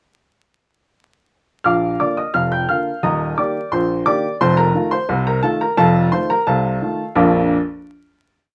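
A woody upright piano carries this short ragtime piece alone, sitting up front in the sound with a natural, unvarnished tone. Its tune rings out in filled octaves over a stride bass, giving the music a lively, jaunty character in a straight two-beat metre. The piano enters at 1.6 seconds and runs through a brief strain that moves from Bb to Eb and on to F7 before settling on a closing Bb chord at 7.2 seconds. Its range reaches from deep in the bass up into the high treble, and it stops at 7.6 seconds. A moderate studio ambience surrounds the playing, and a layer of vinyl crackle lends the whole piece an aged, old-record feel.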